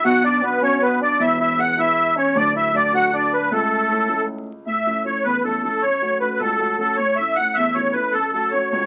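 A reedy, shimmering musette accordion carries the melody up front from the start, with a breathy, whispered flugelhorn adding a jazz-tinged second line until 4.2 seconds and a dark, woody upright piano accompanying beneath, in this bright, lively Celtic jig in 6/8 and A major at 104 BPM, cut from a longer piece and heard through moderate club reverb and the crackle of a very old 78 rpm record.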